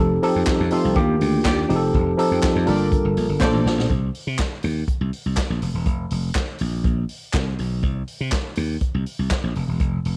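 A worn, slightly out-of-tune tine electric piano with analog chorus and cassette-tape grit provides the accompaniment in this sultry, glamorous disco excerpt at 122 BPM in C dorian, joined by a rich, vibrato-laden bowed string section that stops at 3.6 s, before the piano itself drops out at 3.9 s after a drum fill, leaving a bright, growly slap bass and a punchy vintage acoustic kit with a rolled-off top to carry the dry home-cassette groove to 10.2 s, with a crisp group handclap in the background until 9.4 s.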